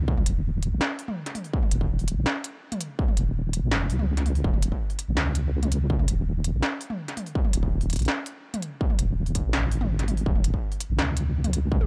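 Dark and heavy, this excerpt of half-time drum and bass moves at 165 BPM in 4/4 with a half-time feel, anchored by a deep, wobbling sawtooth-and-sine bass with chorus and tube saturation sitting up front between Eb1 and Db2. A distorted electronic kick punches alongside an industrial kit of clanging snare, crisp hi-hats and toms, all placed close in a dry space with little reverb. The kick drops out from 9.5 to 10.3 seconds before returning to the end of the clip.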